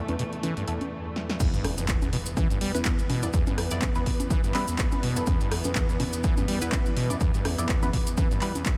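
Acid house with a hypnotic, raw feel and a swung groove: a squelchy, resonant saw acid bass riff with overdrive, tape echo and sidechain pumping runs under rich, sidechained bowed string chords, an ethereal airy pad lasts only until 0.9 seconds, and muted dub chord stabs with phaser and echo sit in the background, while a tape-warm analog drum machine of congas, crash, handclaps, hi-hat, rim click and snare is joined at the drop at 1.4 seconds by an up-front punchy kick, grainy cabasa and a very quiet electronic impact, in a dreamy mix soaked in cathedral reverb.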